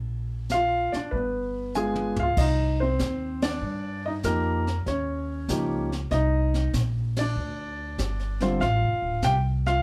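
Warm and playful, this short jazz piano trio fragment swings easily at 96 BPM, with a pizzicato upright bass opening alone, its woody, thumpy gut-string tone up front, before a warm grand piano carrying the melody and a brushed drum kit join at 0.5 seconds. The intimate piano has long sustain and audible action noise, while the drums bring dark cymbals, a high-tuned snare and a boomy kick, with a drum fill at 1.8 seconds and band accents at 3.3 and 7.1 seconds. A moderate club reverb places the trio further back in the room as the harmony moves from Bb through G7b9 and Cm7 to Dm7.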